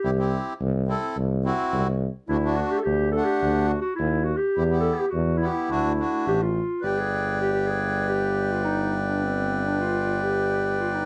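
A distant, roomy clarinet carries the melody in a classical style in this soulful, festive klezmer excerpt at 106 BPM, set against a reedy, clear accordion that sounds close-miked, full and up front. A warm tuba with light vibrato and a smooth top holds the bass with a jazz-style touch, while the chords move through C, D and E minor before the music shifts into G phrygian dominant at 6.8 s. The production is dark, with moderate studio reverb.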